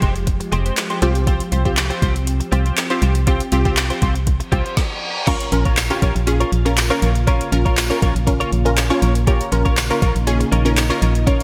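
Dance-pop at 120 BPM with a confident, driving feel, built on a dark, hollow FM bass and a smooth R&B drum kit with a woody snare, metallic hats and gated reverb, while a lush, detuned unison pluck with analog chorus and sidechain pumping, a clean direct-recorded electric guitar riff and a glassy, ethereal FM pad in the background move from Fmadd9 and Csus4 to Bbm at 5.3 seconds, where a reverse cymbal gives way to an impact, and a jingly tambourine enters at 5.8 seconds, all in a bright 1980s-style digital production cut from a longer piece.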